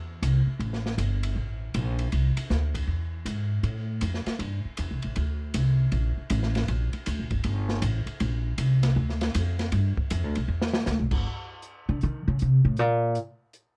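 A swung 4/4 at 158 BPM drives this intense, cool modal jazz fragment in A phrygian, cut from a longer piece. A woody, thumpy upright bass on gut strings, plucked and up front, anchors the groove. An acoustic small-room drum kit with dark cymbals, a medium-tuned snare and a boomy kick sits further back, and it plays a drum fill at 10.5 seconds before the bass steps into a solo at 11.3 seconds. The dry sound carries the worn, warbling pitch drift of old cassette tape.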